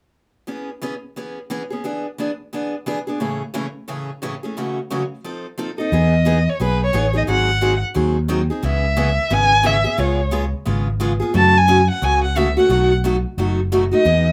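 Swinging and charming, this excerpt of acoustic string swing in the jazz manouche style opens with a bright, boxy parlour steel-string guitar picking out the chords alone from 0.5 s. At 5.8 s a single dark, bowed violin takes the melody with expressive vibrato, portamento and a soft attack, joined at 5.9 s by a round, punchy, amped fretless electric bass. All three sit up front in a moderate club reverb as the harmony moves through rich seventh chords.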